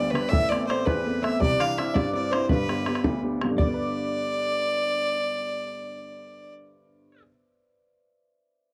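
A cheerful, bright Celtic jig in G major and 6/8 at 110 BPM opens with a biting, nasal, earthy fiddle up front carrying the melody over a woody, present upright piano, while a shimmering, ringing hammered dulcimer in the background and a dark, clean, very quiet hollow-body electric jazz guitar add second lines, and an open, boomy, band-limited bodhran drums from 0.2 to 3.8 seconds, all in a dry, close 1970s-style studio sound cut from a longer piece.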